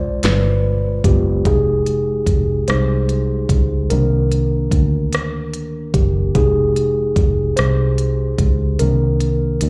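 A mellow tine electric piano carries this sultry, yearning slow R&B passage in a straight six-eight, its clean tone colored by a slapback echo as it takes a solo over a G7b9 that settles into Fm9 and Cm7. Beneath it, a round, foam-muted fingered bass sits dark and up front, while a smooth, electronic drum kit with a knocking kick, fat snare, crisp hats and rim clicks joins at 0.2 seconds, its kick dropping out at 8.8 seconds. The whole piece is heard as a live gig through the venue's PA, bathed in club reverb, and is cut from a longer performance.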